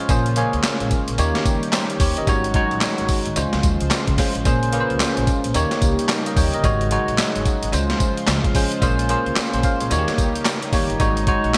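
A bell-like tine electric piano and a shimmering, slow-attack pulse-width pad open this excerpt together, the piano bright, clean and up front with analog chorus, the detuned retro pad sustaining chords in the background. It is a bouncy, slick slice of new jack swing R&B in Bb minor at 110 BPM in 4/4, with a 62% swing on the sixteenths. At 0.1 s a gritty, compressed boom bap sampler-style kit arrives up front, with a thumpy pitched-down kick, a high-tuned snare, handclaps, hi-hat and tambourine, all treated with gated reverb and re-recorded in a large room. A woody pizzicato upright bass with steel strings enters at the same moment, alongside a very quiet, metallic cowbell that sits close and dry. The harmony cycles through Bbm9, Eb7, Ab7sus4 and Dbmaj7 about every second, breaking off on Ab7sus4 at 11.0 s. A lush hall reverb and bright 1980s-style digital production tie the whole piece together.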